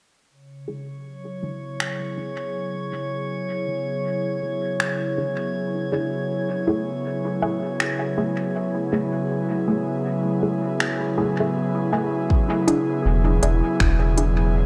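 At 80 BPM in 4/4 with swung sixteenths, this hazy, peaceful ambient dub passage in E mixolydian, cut from a longer piece, rides on finger snaps and smooth hi-hats from an organic electronic kit, overdriven and sent through dub echo. An airy, breathy pad with chorus holds sustained chords moving from E7 to F#m9 under a filter sweep, while muted, detuned dub chord stabs with phaser and dub echo sweep in the background, and a glassy, drifting harmonics texture with its own reverb floats above. At 12.3 s a deep, overdriven electronic kick arrives up front, joined at 12.5 s by a very quiet, pure FM bell arpeggio, and at 13.1 s a round sub bass settles on E1, all within a moderate digital scoring-stage ambience.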